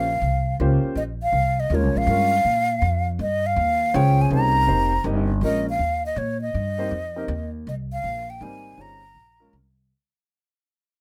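Swung eighths drive a lilting 3/4 pulse in this intense, hypnotic modal jazz fragment, cut from a longer piece, where a breathy, hollow metal flute carries the melody up front with vibrato and a soft attack. A natural-toned grand piano supplies accompaniment behind it, while the pizzicato upright bass sounds woody and thumpy on gut strings, also close and present. The close, detailed sound sits in light reverb, and the music fades out from 5.4 seconds, with the flute and piano stopping at 9.5 seconds and the bass lingering until 9.9 seconds.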